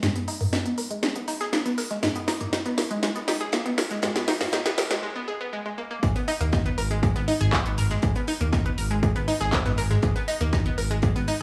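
A driving 120 BPM pulse in straight 4/4 anchors this melodic techno excerpt in G# minor, its mood melancholic yet propulsive. For the first 6.0 seconds the track builds: a techno kit of cracking snare, smooth hats, handclaps and toms, overdriven and up front with sidechain pumping on the toms and hats, plays a drum fill while a faint, airy acoustic kit adds hi-hat and a medium-tuned snare far back in the mix. Over this, a bright, detuned analog pluck spins arpeggios from G#3 to A#5, its ring-modulated, noise-tinged tone carrying chorus, tape echo and sidechain pumping as a filter sweep runs across the build, with a G#madd9 chord at the start. After a short break from 5.0 seconds, the drop lands at 6.0 seconds with a heavy, overdriven electronic kick and a round, deep bass between G#1 and D#2, sustained and dark with sidechain pumping. The sound is dry and gritty, with a hardware edge, a high-passed low end and a moderate hall reverb alongside a small room ambience.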